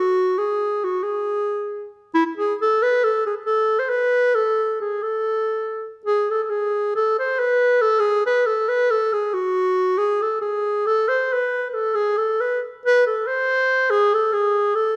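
In free time, this Balkan folk fragment from a longer piece features a lone clarinet, warm and soft in attack and played in a classical style, sitting up front in a moderate recital-hall reverb as it moves through a virtuosic, restless line between E4 and C5, shifting into a second section at 6.1 seconds.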